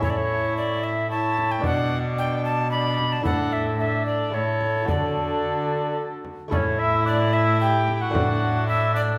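An airy, chiffy alto recorder carries the melody up front in this courtly, festive renaissance-style consort dance in 3/4 at 111 BPM, with a mellow cor anglais on the second line, a delicate fingerpicked lute and gut-strung viola in accompaniment, a nasal bowed cello on the bass, and a deep frame drum played with soft hands until 8.4 seconds, all set in a roomy recital hall.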